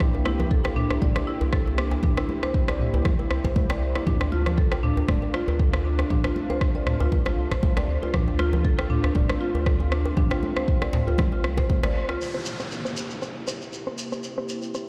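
A deep, up-front electronic kick and a tape-warm afro-pop kit with rim clicks and low-pass-filtered toms drive this swung afro house excerpt from the start, joined by a dark, nasal analog bass, tight cracking djembe and ringing congas in the background. Over them, a woody padauk marimba plays arpeggios through a digital delay, and a smooth, detuned sawtooth pad holds C7 and Dm7 chords with chorus, while the pad, marimba and bass all pump against the sidechain. After a band accent at 11.8 seconds the kick, bass, marimba and hand drums fall away, and from 12.2 seconds a grainy shekere and an electronic downlifter join the kit as a filter sweeps the pad, all heard through a big sound system in a bare stone room.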